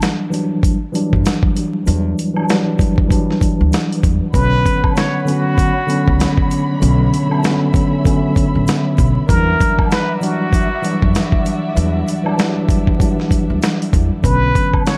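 Boom-bap hip-hop at 97 BPM with a swung sixteenth feel and a moody, gritty air, this excerpt opens with a break as a mellow tine electric piano, dressed in analog delay, and a dusty, compressed sampler-style drum kit with a thumpy kick and medium-tuned snare sit up front, while a distant egg shaker and woodblock stay in the background. A woody pizzicato upright bass on gut strings arrives at 1.1 seconds, and at 4.3 seconds a breathy plunger-muted trumpet takes the solo with wah-wah inflections, scooped notes and light vibrato, trailed by analog delay, over a veiled, lush con sordino string section holding sustained chords. The harmony moves between Em9 and Bmadd9 in an echo-heavy mix with small room ambience and vinyl crackle.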